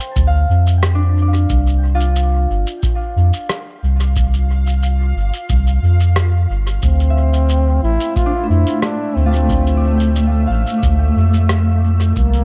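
A round, up-front sub bass anchors this meditative, spacious ambient dub excerpt, paired with a dry, deep electronic kick. A ringing, fingerpicked concert harp plays arpeggios and a muffled shaker and rim click sit low in the mix, both trailed by dub echo, over chords moving from Dm7 to Csus4 and back. A blurred, detuned granular pad drifts in at 4.1 seconds with slow-attack sustained chords in its own reverb, and at 6.8 seconds a solo trombone enters with a classical-style melody full of vibrato, also carried by dub echo, all within a lightly reverberant space.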